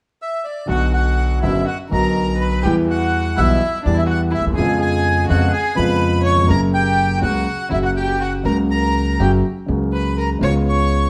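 A rubato tango in 4/4 around 123 BPM, this tense, melancholic passage in B harmonic minor opens with a reedy, airy bandoneon carrying the melody up front from 0.2 seconds. At 0.7 seconds a bowed violin joins with a nasal, vibrato-tinged second line, a dark, mellow baby grand piano supplies vintage-toned accompaniment with long sustain, and a woody, thumpy pizzicato upright bass anchors the low end. Moderate large-studio reverb and a layer of vinyl crackle frame the sound, and the harmony moves from Bm through Em and C#7/E# to F# before closing on C#7.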